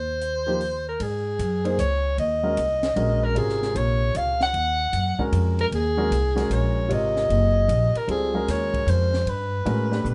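A soprano saxophone and upright bass open this hypnotic, open modal jazz excerpt together, swinging in a brisk 3/4 at 152 BPM in Ab mixolydian. The saxophone carries the solo melody with a jazz-style vibrato and a roomy, slightly distant tone that still sits up front, while the plucked bass adds a woody, steel-strung low line, also close in the mix. A compact cocktail kit enters at 0.2 seconds, its high-tuned snare, punchy kick, hi-hat and ride cymbal sounding natural in a small room and sitting lower in the mix. A baby grand piano joins at 0.5 seconds with a warm, natural accompaniment. The harmony moves from Ebsus2 to a long stretch of Ab9sus4 before shifting to Gadd9 at 9.3 seconds, all wrapped in light reverb and a dark, warm production.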